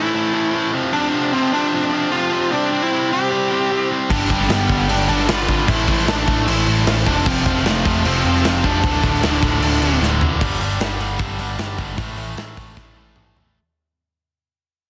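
Heavy and aggressive, this hard rock excerpt opens with a bright, tight distorted guitar riff beneath a smooth overdriven lead melody and a faint, airy breathy pad; at 4.1 seconds a second lead line in the background, a very quiet second tight riff guitar, a double-tracked crunchy guitar, a round, punchy overdriven bass and a big, up-front rock kit with softly clipped kick and snare join in, before a drum fill at 10.0 seconds leads into a closing section that fades out by 13.6 seconds.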